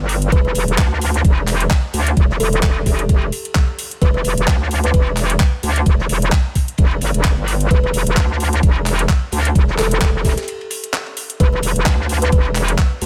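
A bright, saturated FM wobble bass with chorus and sidechain pumping drives this aggressive, gritty bass house excerpt in E minor at 130 BPM with a swung 16th feel, over a knocking, up-front electronic kick with studio reverb, while a garage kit adds handclaps and metallic hi-hats, a very quiet, dry 70s kit contributes a dark ride cymbal and fat snare, and a woody, thumb-plucked kalimba with digital delay sits in the background before a brief break at 10.5 seconds.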